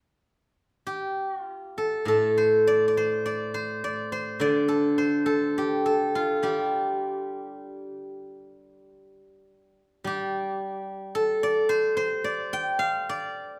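A moderate recital-hall reverb gives this short recording a natural sense of space, with the sound of a church or concert hall lingering around every note. It is a fragment of a Chinese traditional solo piece for a steel-string zither, played with fingerpicks and heard up front in the room. The instrument rings with a bright, silvery acoustic tone across a range from A2 to G5. The playing is freely paced and rubato, giving the music a contemplative, longing mood. A brief opening phrase gives way at 2.1 seconds to a longer passage that carries the fragment through to its close at 13.6 seconds.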